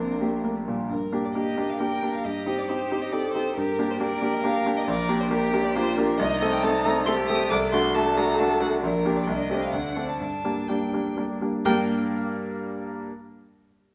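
Stormy and urgent, this quick classical-period movement for piano trio in G minor moves in a rubato 3/4 at 122-140 BPM, with a rich, distant violin singing the vibrato melody over a close, airy sul tasto cello line, both ending at 11.9 s, while a bright, worn concert grand with deep bass accompanies up front and plays on alone until 13.1 s, all in a moderate recital hall.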